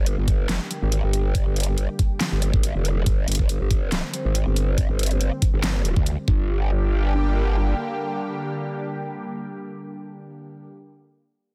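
A growling, saturated bass with a formant-filtered wobble sits up front through a menacing, aggressive heavy wobble dubstep drop, cut from a longer piece, with a half-time, lightly swung feel. An overdriven, knocking electronic kick and a dubstep drum kit of handclaps, hi-hat and a huge snare drive the drop until about 6.4 seconds, and the bass stops at 7.7 seconds. Beneath them, a lush, detuned sawtooth-and-square unison pad holds sustained chords with chorus, phaser and sidechain pumping, carrying on alone to 10.7 seconds in a dry, dense, heavily limited modern mix.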